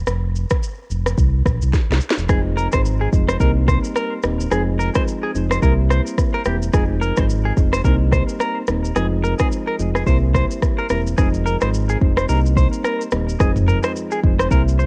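Hypnotic and mellow, this afrobeats fragment cut from a longer piece opens on a deep, sine-like sub bass with octave and an up-front electronic afro-pop drum kit of deep kick, sharp snare, rim click, shaker and toms, gritty with vintage 12-bit sampler texture, before a drum fill leads at 2.3 seconds to soft, round electric-piano-like synth keys with chorus and a filter sweep alongside a bright, twangy, scooped clean electric guitar riff with subtle chorus and analog delay, all cycling through Fm7, Cm7 and C7 chords in a home cassette recording with digital ambience.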